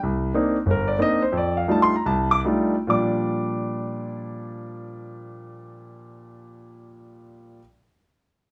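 A swung eighth-note feel in 4/4 carries this brief jazz fragment, cut from a longer piece, with the tempo moving between 135 and 192 BPM and easing back over the opening 2.9 seconds. A concert grand piano plays solo throughout, sitting up front with a natural tone, a deep bass register and a warm glow, ranging from low G1 to a high D6. The harmony in B-flat major moves from Cm9 to F13 before settling on Bb6 at 2.9 seconds, where a second section begins. A moderate club ambience with a short reverb gives the sound a close, intimate setting. The mood is relaxed and warm, and the piano stops at 7.6 seconds.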